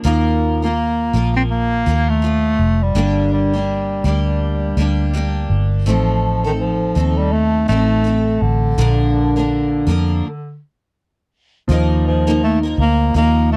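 Picked steel-string acoustic guitar, double-tracked and warm, opens alongside a dark, foam-muted electric bass that sits round and punchy up front, with a clear bass clarinet taking the melody a moment later. This is tender, wistful acoustic pop in 4/4 with a gentle swing on the sixteenths, moving through Ebsus2, Gm, Adim and Bb. The bass clarinet carries the solo line in a jazz style, its vibrato and scooped notes sitting present and forward. A stop arrives between 10.2 and 11.7 seconds, and when the progression returns to Ebsus2 at 11.7 seconds, a woody, slightly detuned upright piano enters in the background with long sustain. The sound is dry and close, like a 1970s studio recording with little reverb, and this passage is cut from a longer piece.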